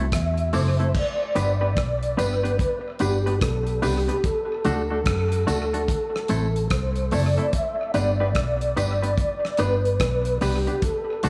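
Roots reggae at 73 BPM in G major, this laid-back, warm excerpt moves in 4/4 with a swung sixteenth-note feel. The bass sits up front, dark, round and punchy with a foam-muted, amped tone, anchoring a chord cycle that moves from Am to G, then D, and back through Am and G. A clean, compressed semi-hollow electric guitar supplies fingered accompaniment in the midrange, its hollow-body tone trailing dub echo. The mellow tonewheel organ carries the melody with a soft, flute-like voice, chorus vibrato, audible key click and a stopped rotary speaker, also sent through dub echo. A damped 70s acoustic kit keeps things dry and tight, with dark cymbals, a rolled-off top and a touch of tape echo across crash, hi-hat, kick and rim click, while tambourine and woodblock enter at 0.5 seconds, distant in a large room in the background. Light studio reverb gives the mix a gentle sense of space.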